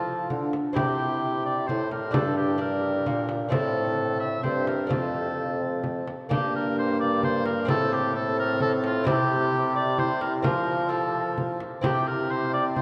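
Solemn and courtly, this renaissance-style consort dance in triple time, cut from a longer piece, sets a distant, roomy oboe melody up front over a delicate, fingerpicked lute with doubled nylon strings in the background, a punchy trombone and a bassoon bass, both warm with light vibrato, and a small, bright frame drum entering at 0.3 s, all bathed in a wet cathedral reverb.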